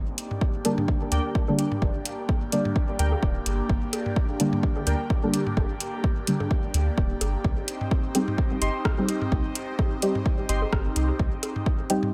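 Meditative and deep, this dub techno excerpt in G minor moves at 128 BPM with a light 16th-note swing, as an up-front overdriven electronic kick and a pure, clean sine sub bass anchor a deep house kit of metallic hats and rim clicks, dub-echoed electronic toms and bongos, soft full-bodied chord stabs drenched in chorus, phaser, cassette tape and echo, an airy breathy pad holding sustained chords, and a warbling, nostalgic lo-fi synth keys riff that appears from 1.1 to 5.0 seconds and again at 8.6, with the bass, percussion, stabs, pad and keys pumping against the kick while the harmony shifts from Gm to Cm at 7.4 seconds.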